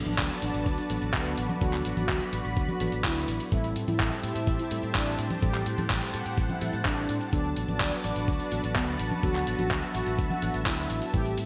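A straight 4/4 italo disco groove at 126 BPM is driven by a gritty, thumpy electronic kick and an up-front sampler-style kit of congas, handclaps and hi-hat, both bathed in studio reverb, with gated reverb on the kit, while a punchy fingered bass with an envelope filter holds the low end. A bell-like tine electric piano stabs through analog chorus and a thick, detuned sawtooth pad sustains chords with chorus and phaser, moving from D6 to Am7 at 3.5 seconds and back to D6 at 7.3 seconds. Over this, a round, dark synth brass carries a nostalgic, danceable melody with vibrato, chorus and digital delay, all set in a lush hall and a bright 1980s-style digital production.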